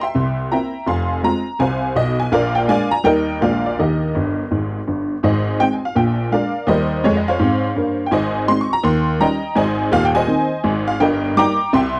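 A detuned, jangly honky-tonk upright piano sits up front through this 12-second stretch of exuberant stride jazz, playing alone at a swinging 166 BPM in 4/4 with swung eighths and reaching from Eb1 to D6. It works through a turnaround-flavoured progression in Eb major, tosses in a fill from 4.1 s, and moves to Ab major at 5.2 s, its short sustain keeping the chords crisp. The sound is a dry, close 1970s-style studio recording with light reverb, cut from a longer piece.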